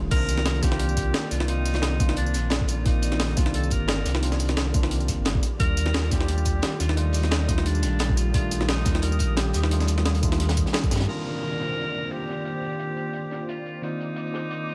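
A clean tine electric piano through a combo amp, a soft, breathy pad and a deep sine sub bass open this melancholic, rolling liquid drum and bass cut at 175 BPM in C dorian, moving between Cm11 and Ebmaj9#11. A clear alto saxophone with light vibrato, subtone and scooped notes carries the jazz-style melody with delay, over a gritty, pitched-up sampler breakbeat with a high-tuned snare, a thumpy electronic kick, a dark, saturated second break kit in the background and very quiet, ringing bongos and congas. Around 11 s the sampler kit, kick, bass and hand drums stop, and an electronic downlifter sounds while the piano, pad, saxophone and background break carry on in a small room.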